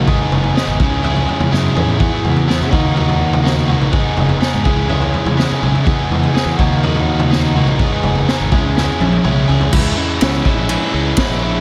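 A raw, lightly reverberant mix opens this wistful yet upbeat indie rock excerpt at 124 BPM in a straight 4/4, where a bright, double-tracked overdriven electric guitar sits up front playing a picked riff. Beneath it, a punchy fuzz-driven fingered electric bass and a gritty, saturated garage drum kit with a high-tuned snare, punchy kick and rolled-off top carry the cycle of G#m7, C#m, E and D#m. Drum fills land at 1.5 and 8.8 seconds, the second leading into a brief new section on C#m at 9.7 seconds.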